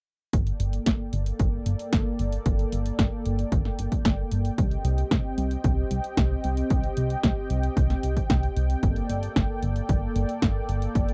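A straight 4/4 pulse at 113 BPM drives this melodramatic, bittersweet italo disco excerpt, where a punchy, tape-warm electronic kick and an up-front house kit of punchy snare and warm hats push under a dark, glossy chorused synth bass with tube saturation, while a mellow, detuned sawtooth pad holds smooth chorused chords through Gmadd9, Cm and back to Gmadd9 at 8.8 seconds in a dry, close 1970s-style studio sound.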